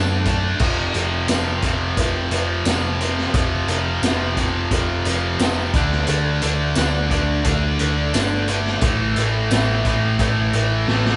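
An overdriven, double-tracked electric guitar riff sits up front alongside a dark, round hollow-body picked bass from the start, with a vintage drum kit of punchy kick, medium-tuned snare, hi-hat, crash and tambourine joining at 0.3 seconds, in this swaggering, brooding classic rock excerpt at 88 BPM in 4/4, moving through D, F5, D5 and A5 in a moderately reverberant live room before a drum fill at 10.9 seconds.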